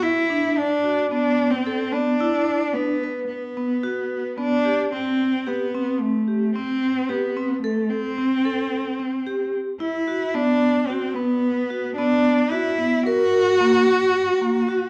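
Set in a straight, uneven five-beat metre, this urgent yet pensive contemporary chamber piece pairs a clear, smooth bowed cello carrying the melody with vibrato against metallic, ringing vibraphone arpeggios struck with medium hard mallets and shimmering with fast motor vibrato, moving from Bm7 to Am7 at 4.9 seconds before settling on F# at 13.1 seconds, all heard through a moderate scoring-stage reverb and the worn, warbling pitch drift of old cassette tape in a short cut from a longer work.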